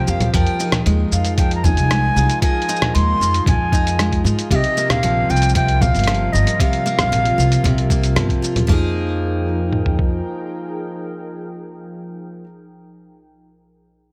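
Small room ambience surrounds this autumnal, delicate folktronica excerpt in F minor at 115 BPM, moving from Fm11 to C7sus4 and back. An airy, bright wooden flute carries the melody up front with gritty 12-bit sampler texture and delay until 8.2 seconds. Beneath it sit picked steel-string acoustic guitar arpeggios with delay, a woody pizzicato upright bass, and a detuned, warbling tape-like pad with chorus, phaser and reverb in the background. Muffled, pitched-down lo-fi sampler drums add cabasa, congas, hi-hat and rim click until 8.7 seconds, while a kick drum and toms carry on to 10.1 seconds.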